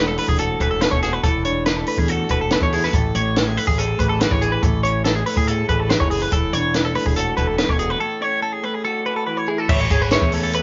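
A straight 4/4 pulse at 142 BPM drives this bright, playful math rock and midwest emo excerpt in A major, with a compact cocktail drum kit coming in at 0.2 seconds, its punchy kick, high-tuned snare and dark cymbals sitting up front in a small-room sound. A clean, compressed twelve-string electric guitar picks twangy arpeggios up front, while a second electric guitar through a small old amp adds slightly broken-up, lo-fi accompaniment and a growling picked bass, overdriven and bright, anchors the low end. The chords move from E9sus4 through Amaj9 and back to E9sus4 before a break from 8.0 to 9.7 seconds on A69, landing on Amaj7, all in a live-room sound with light reverb and a rolled-off top.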